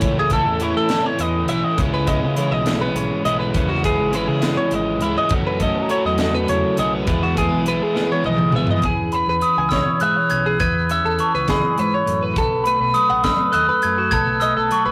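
A rough rehearsal-room recording with warm saturation and a moderate, short booth ambience frames this bright, intricate fragment of math rock and midwest emo, moving at 68 BPM in a straight 6/8 in E major, tuned to A4 = 445 Hz. Two clean, compressed twelve-string electric guitars share the bed, one warm and up front holding the accompaniment while the other rings out sparkling arpeggios, over a growling, overdriven fingered bass and a crisp, polished fusion kit with a high-tuned snare and punchy kick. A double-tracked, overdriven guitar riff drives the opening through chords like C#m9 and F#m9, lasting through a drum fill from 8.0 to 8.8 s, and from 9.1 s a bell-like glockenspiel played with soft plastic mallets carries the melody over E6 and B7.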